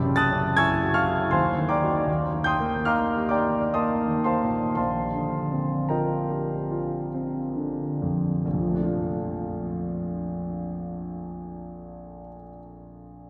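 Impressionist classical solo piano in Bb major, luminous and serene, where a clear concert grand with deep bass and long sustain drifts through a rubato 3/4 at 44-83 BPM, moving from Gbm7 through Ebmaj7 to Bb69 while slowing between 1.0 and 8.4 seconds before settling on Bbmaj7 at 8.4 seconds, the sound bathed in a cathedral's lingering reverb in this brief fragment of a longer piece.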